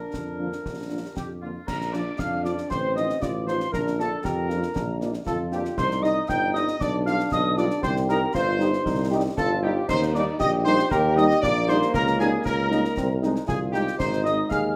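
A spirited, festive military-style march for wind band, cut from a longer piece, set in a roomy large studio with a generous wash of reverb, though the concert snare, bass drum and clash cymbals sit close and dry with dark cymbals. A dark, distant trumpet section carries the melody over a present, up-front tuba with light vibrato, while a smooth-topped euphonium, a background woodwind section and a pure, expressive piccolo entering at 1.2 seconds add second lines. Very quiet horns supply accompaniment and a loose trombone section holds soft sustained chords as the harmony shifts to a new key at 9.9 seconds.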